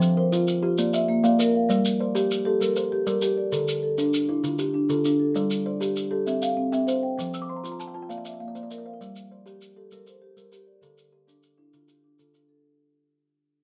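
Set in a moderate studio reverb and fading out from the start, this short section cut from a longer piece is a trance-like, hypnotic mbira-style interlocking cycle in the southern African traditional style, in G dorian at 132 BPM in a straight 12/8. A round, mellow marimba played with soft mallets sits up front with arpeggios, while a woody, dark kalimba with short thumb plucks weaves its own arpeggios through the cycle and adds a fill from 7.3 to 9.0 seconds. Grainy, saturated maracas keep the pulse until 12.5 seconds beneath a chord cycle that turns from F5 through Bb, Gm and Dm.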